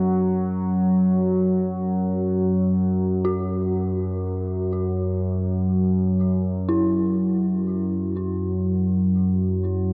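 Drenched in a huge, cavernous reverb with a dark, warm finish, this desolate dark ambient drone drifts in free time, cut from a longer piece. An up-front analog drone, warbling and vintage with a chorused sawtooth and pulse-wave body, sustains from the start. At 3.2 seconds an eerie, inharmonic FM synth bell, set lower in the mix, joins with chorused, delayed arpeggios.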